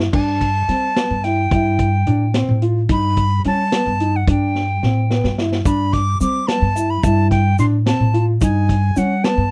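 Upright bass and a vintage drum kit start together, joined at once by a reedy, airy silver flute carrying the melody up front and a dark, mellow grand piano rolling arpeggios, in a driving progressive instrumental excerpt in 5/8 at 217 BPM in eighths. The pizzicato bass sounds woody and growly on steel strings, while the kit offers a punchy kick, a medium-tuned snare and dark cymbals with a rolled-off top, and a drum fill from 4.6 to 5.7 seconds leads into a grainy egg shaker tucked in the background from 5.7 seconds. The intricate harmony moves through slash chords over G, from rootless Fmaj7/G to B7/G, and the close, dry 1970s-style studio sound carries light reverb.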